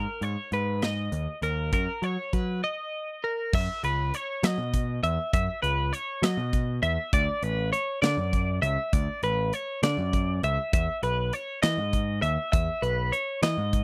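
A clean twelve-string electric guitar opens with compressed, twangy arpeggios, joined at once by a dark, round, overdriven picked bass, and a modern acoustic drum kit comes in at 0.2 seconds. The fragment of this playful math rock and midwest emo piece moves at 67 BPM in a straight 6/8, with the guitar's bright figures and the bass sitting up front in a dry, close 1970s-style studio sound touched by reverb. The drums bring an airy small-room feel, a punchy kick, a medium-tuned snare, hi-hat and crash cymbal, all with a polished finish. The opening moves from G#m to Bmaj9/F# before a break at 2.6 seconds, and a new section begins at 3.5 seconds. That section settles on longer chords, moving through F#7sus4, Dmaj7 and Emaj7.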